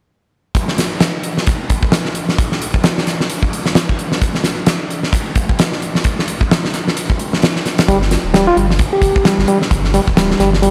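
Set in a small room with light reverb, this gritty, swaggering breakbeat cut opens at 0.5 s on a huge arena drum kit, up front with a pumping room sound, a punchy kick, a fat snare and hi-hat riding a swung sixteenth-note feel. At 7.9 s an overdriven, reedy electric piano enters with a riff through a combo amp and analog delay, joined by a deep, thick sub bass with a saturated, sustained tone and fast attack.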